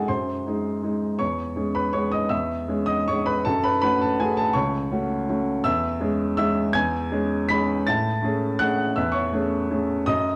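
A woody upright piano with long sustain plays alone and up front through this 10.4-second passage cut from a longer classical waltz, elegant and nostalgic in mood, in C# minor at 162 BPM in 3/4 with uneven, rubato beats and tuning at A4 = 441 Hz. Spanning C#2 to B6, it moves from G#7/F# through C#m/E and F#m back to C#m/E before settling on Amaj7. A wet recital hall reverb and a dark, warm production surround the instrument.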